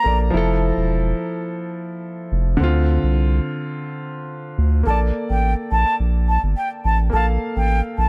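A hypnotic, sultry dancehall groove at 106 BPM, cut from a longer piece, built on a thick, saturated sub bass sitting up front beneath a clear grand piano whose chords, Fmaj7 moving to Dm7 and then Bbmaj7, ring with long sustain and audible action noise. A mellow silver concert flute with vibrato and a tape echo touches in at the very start, then returns at 4.9 seconds to carry the melody in a pure yet slightly unsteady tone that sounds distant. The sound is dry, with little reverb.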